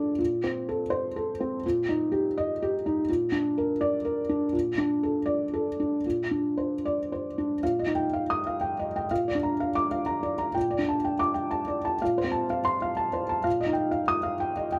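A felt-muted upright piano plays alone from the first moment, its mellow, intimate tone sitting up front with the soft noise of its action clearly audible. This is peaceful, hopeful neoclassical minimalist piano in B-flat major, moving in 3/4 at 124 BPM with a rubato feel, tuned slightly low to A4 = 439 Hz. The opening passage drifts through open, suspended colors such as Bbsus2, Bbmaj7 and Bbadd9 over a steady B-flat foundation. At 7.6 seconds a second section begins, where chords like Ebadd9/Bb, Gmadd9/Bb and F/Bb shift above that same bass note. The playing spans from Bb2 up to Eb6, framed by a moderate studio reverb that lends a natural sense of room. Cut from a longer piece, the passage runs to 14.8 seconds.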